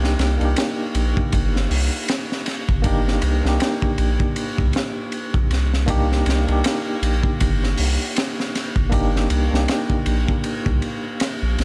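Hypnotic and brooding, this trip hop excerpt at 79 BPM in C minor sits on a single Cm7 chord for its 11.6 seconds, with a soft, deep, round dub sub bass underpinning a crunchy, gritty, saturated breakbeat kit with a punchy kick, high-tuned snare, dark cymbals and hi-hat, while a bright, clean tine electric piano colored by tremolo and tape echo plays accompaniment in a small room ambience, all carried by a 16th-note swing.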